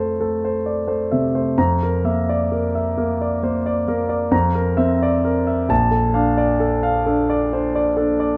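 A clear concert grand piano opens this short cut from a longer impressionist classical solo piece, dreamy and hazy at a slow 44 BPM in a rubato 9/8, spanning Bb1 to Bb5 with a deep bass and a natural, up-front sound captured by close, detailed microphones in light reverb, as the harmony moves from Fmaj7 to C9/F at 1.6 seconds and on to Bbmaj7 at 5.7 seconds.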